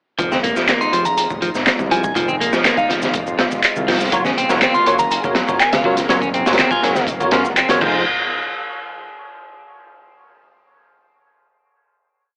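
A crunchy, saturated breakbeat drum kit sits up front, its looped and edited break pairing a punchy kick with a high-tuned snare under a dark, rolled-off top, while an overdriven analog shaker and handclap layer rides over it. This is a gritty, energetic breakbeat piece whose drop begins at 0.2 seconds. A fat, detuned sawtooth bass plays a dotted-rhythm part with a filter pluck, and a clean, compressed electric guitar repeats a 16-step picked riff trailed by dub echo. Very quiet low-tuned congas sit deep in the mix. Above them, a lush unison pad holds sustained chords moving from Fm7 to Gbmaj7 at 4.1 seconds, and a glassy FM synth bell enters with short answering phrases coloured by chorus, phaser and an old record sound. At that same chord change, a barky, bell-like tine electric piano adds dotted-rhythm stabs through ensemble chorus and dub echo, before the piece closes on a final hit at 8.1 seconds, the whole mix carrying a light reverb and an AM radio sound.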